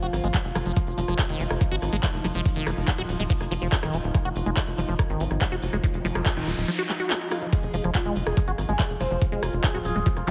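This psychedelic trance excerpt opens on a dark, morphing wavetable pad holding sustained chords and a squelchy, resonant acid bass riff, both pumping with the sidechain and coloured by phaser, over a tight, punchy sequencer bass, a drum kit of handclaps, metallic hats and rim clicks, a grainy tube shaker in the background and a knocking kick up front from 0.3 s. A noise sweep moves through the mix from 6.0 s, and at 7.5 s a gritty, screaming synth lead with vibrato takes the melody, soaked in dub echo and a cassette-tape tint. The hypnotic whole sits in a lush hall ambience, heavily compressed into a radio-like sound.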